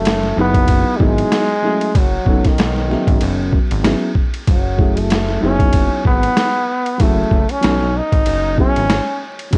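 Swinging 16ths at 95 BPM in 4/4 drive this mellow, smoky jazz-hop excerpt, where a gritty, pitched-down, compressed boom bap kit with a thumpy kick sits up front from 0.1 seconds over a fat, detuned analog bass with ring modulation and a filter sweep, while a boxy concert grand piano enters at 0.4 seconds on chords such as C#m11/F# and F#m9 and a warm trombone with vibrato plays a distant solo melody, the whole dark production dry and laced with vinyl crackle.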